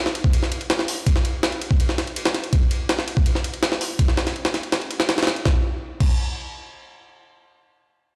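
Heard through a big sound system in a bare room with large studio reverb, this raw, dark drum and bass fragment features a gritty, compressed, pitched-up jungle sampler-style drum kit sitting up front, with a thumpy kick, high-tuned snare, hi-hat, ride and crash cymbals, playing from 0.1 to 6.1 seconds.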